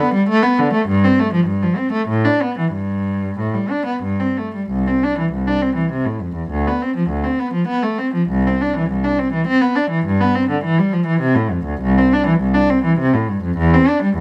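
Radiant and dance-like, this short passage from a longer baroque-style suite movement for unaccompanied cello moves in a flexible, rubato 3/4 at 86-105 BPM in C major, with a single bowed cello placed up front, its rich tone shaped by vibrato, soft attacks and expressive portamento across a range from C2 to D4, heard in light reverb and shifting into a new section at 4.7 seconds.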